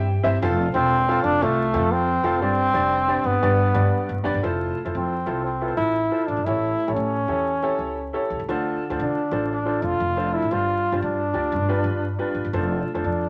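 Warm and danceable, this excerpt of uptempo, swung 1960s-style soul opens with a brief upright piano fill as a clear, vibrato-laced trombone carries the pop-style solo melody over slightly detuned, long-sustaining upright piano chords and a woody pizzicato upright bass, all three sitting up front in a moderate studio reverb beneath a layer of vinyl crackle.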